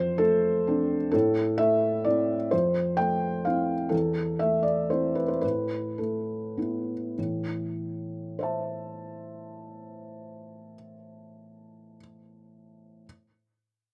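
A felt-muted upright piano carries this brief, wistful fragment alone, its tone soft and dark, with thick felt dulling the hammers and the mechanical action noise clearly audible up front. The piece is neoclassical minimalist piano in A minor and 3/4, played rubato with the pulse drifting between 97 and 132 BPM, and it slows down from 3.2 to 7.2 seconds before a new passage begins. The harmony moves from Dm7/F through Am, Fmaj7, Am/E and Asus2 before settling back on Am at 7.2 seconds, spanning from E2 up to A5. A slapback echo trails the piano, and a light reverb adds a faint halo to an otherwise intimate, outdoor recording that carries little sense of a room. The mood stays reflective and mellow throughout this 13-second excerpt, which is cut from a longer piece.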